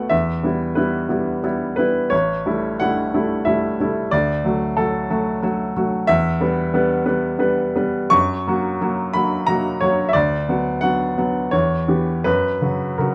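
A clear, intimate baby grand piano with audible action noise and short sustain sits up front across this bittersweet, passionate 13-second excerpt of a romantic character piece for solo piano, moving in a rubato 3/4 at 80-93 BPM through Em, A7, D, F#, Bm/D and C#m7b5/E over a span from A1 to C#6, with light reverb and a dark production.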